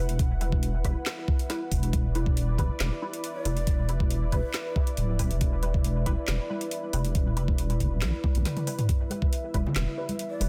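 A deep, saturated wobble bass sits up front in this meditative, heavy half-time deep dubstep excerpt, joined by an overdriven, knocking electronic kick and a garage drum kit with a woody snare, metallic hats, handclaps and toms that break into a fill at 8.2 seconds. A moody analog pad holds sustained chords above muted, detuned dub chord stabs treated with phaser and dub echo, while a breathy, close-miked ney with vibrato drifts in the background from 3.4 seconds. Thin-skinned congas played with soft hands enter at 9.1 seconds, all within a dense, heavily limited, dry mix.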